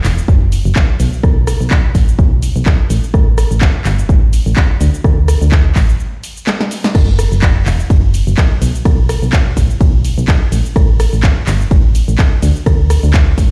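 Piano house at 126 BPM in 4/4 with a light 16th-note swing, this bittersweet, soulful excerpt pairs a round, mellow FM bass, up front with sidechain pumping, with a tape-warm analog drum machine playing cabasa, crash, handclaps, hi-hat, ride, rim click and a punchy snare. An overdriven, layered electronic kick sits prominently from 0.3 s, and a short break from 6.0 s closes with a drum fill at 6.5 s. The whole mix sounds as if played through a big sound system in a bare, stone-walled room, with a short room on the snare, clap and hats.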